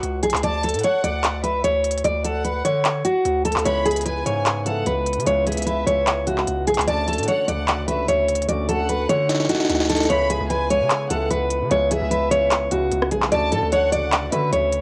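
Trap hip hop at 149 BPM in a menacing, hard-hitting half-time feel, cut from a longer piece, where an up-front picked steel-string acoustic guitar carries a full-bodied, filtered melody with finger squeak over a saturated, heavy distorted 808-style bass and crisp, tape-worn trap drums with sharp snare, rim clicks and handclaps, as a sul tasto chamber violin section with light vibrato and tape echo enters at 0.4 seconds and a dark, mellow grand piano with audible action noise joins at 3.6 seconds, all steeped in the intimacy of a home cassette recording, with a drum fill at 9.3 seconds leading into a new section at 10.1 seconds.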